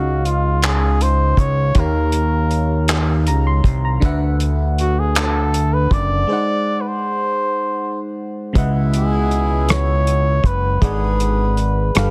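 Yearning and late-night, this slow six-eight R&B cut features a smooth-topped flugelhorn with light vibrato soloing up front until 8.6 s over glassy, bell-like FM electric piano with chorus, a fat, saturated analog bass, and a dry, cloth-damped drum kit of thuddy kick, hi-hat, rim click and handclaps, with a break at 6.3 s before a clear, tight horn section adds punchy stabs at 8.6 s, all in a close, dense and heavily limited modern mix.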